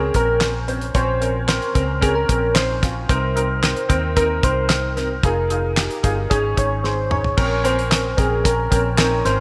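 A straight 4/4 pulse at 112 BPM drives this bittersweet piano-driven pop fragment in Bb minor. A dry, damped 70s drum kit enters at 0.1 s with a fat snare, tight kick, hi-hat, handclaps, toms and crash cymbal, and its fill from 6.8 to 7.4 s leads into a new section. A clear, woody upright piano with ensemble chorus carries the accompaniment under a gentle, round FM synth lead treated with chorus and vibrato, while a dark, foam-muted fingered electric bass adds punchy low end, all set in moderate plate reverb and small room ambience within a bright 1980s-style digital production as the chords move from Bbmadd9 through Cm7, Fm7 and Absus4 back to Bbmadd9.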